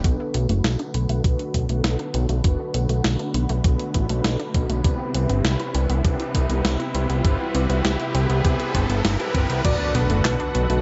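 A dreamy, reverb-soaked mix with a dark top end carries this nocturnal, nostalgic synthwave excerpt at 100 BPM in B phrygian, where a fat, saturated analog bass pumps up front beneath a thumpy electronic kick and a clean 12-bit drum machine with snare, handclaps, hi-hat and crash, while a silky, gritty string pad holds Bm7 and Cmaj7 chords, a lush unison pluck arpeggiates through delay, mellow synth brass stabs behind them, and filter sweeps from the start and a riser from 2.7 s build to an impact at 9.6 s, where a velvety synth lead with tape echo and a very quiet FM electric piano with a soft pad layer enter together.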